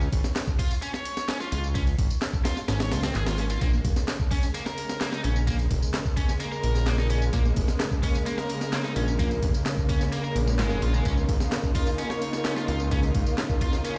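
A fat, saturated analog bass and a gritty, compressed sampler-style breakbeat kit with a thumpy kick and high-tuned snare open this swaggering, energetic breakbeat cut at 129 BPM in Bb minor over a Db chord, alongside a dry analog drum machine adding handclaps, hi-hat and tambourine. From 0.6 seconds a bright, double-tracked distorted guitar riff enters with vintage 12-bit sampler grit and dub echo, and after a faint electronic swell at 2.9 seconds, a veiled, con sordino string section brings sidechain-pumped sustained chords moving from Bbm7 on to Db69. The whole cut sounds as if played on a big sound system in a bare stone room.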